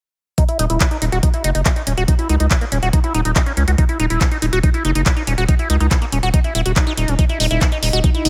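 Driving and alien, this psychedelic trance excerpt is built on a knocking, tape-warm electronic kick up front, a techno kit of handclaps and hi-hat re-recorded in a large room, a round, deep analog bass, and a squelchy, resonant liquid acid riff run through phaser, delay and sidechain pumping, before an overtone-sweeping ring-modulated drone slips in at 7.4 seconds in the background with chorus and reverb.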